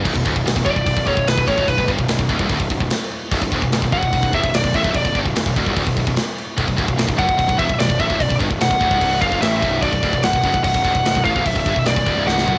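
Relentless and dark, this heavy metal excerpt drives at 147 BPM in B minor, holding on a single Bm chord while a dark, up-front high-gain lead guitar solos from 0.7 seconds. Underneath, a distorted guitar riff sits in the background with cassette-tape grit, joined by a very quiet scooped high-gain guitar, and a growly fuzz bass with overdrive fills out the low end. A tight metal drum kit with bright cymbals and a saturated, gritty tone stays up front, closing with a drum fill at 12.3 seconds, all in a home cassette recording with light reverb.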